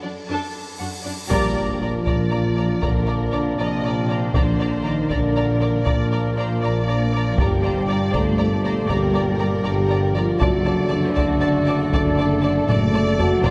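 In a 12/8 at 79 dotted-quarter beats per minute, this heroic, epic film-score passage opens with a huge, bright cymbal swell under two lush, vibrato-rich violin lines carrying the melody and a second line, with violas, mellow French horns and dark, woody cellos beneath. At 1.3 s the full orchestra lands on a big impact: clear trombones and woodwinds join the sustained chords, a close-miked tuba and soft-attack double basses deepen the bass, and a taiko ensemble struck with hard sticks enters. A very quiet, round timpani note sounds at 7.4 s, and a drum fill arrives at 12.7 s, all set in a concert-hall reverb with a 2.5-second tail in this fragment cut from a longer piece.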